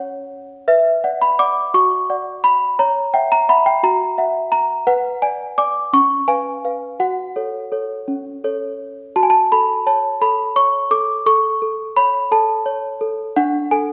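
A small celesta, bell-like and delicate and heard up front, plays a wistful, eerie classical lullaby alone in 6/8 through about 13.9 seconds of an excerpt cut from a longer piece, its harmony drifting through minor and diminished colours before a new section opens at 9.2 seconds, all carried on a moderate recital-hall reverb.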